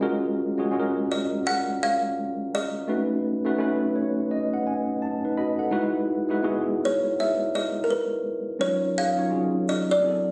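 R&B with a relaxed, soulful mood, this short excerpt from a longer piece moves at 84 BPM with a swung sixteenth-note feel, its chords drifting from Gbmaj9 through Cb7 and Emaj9 to Ebm9. A worn, slightly out-of-tune tine electric piano sits up front as accompaniment from the start, with a fill between 3.6 and 5.7 seconds, while a buzzing kalimba enters at 1.1 seconds with a woody, hollow-box melody of short thumbnail plucks touched by slapback echo. The sound has moderate studio reverb and the character of a phone recording made in the room.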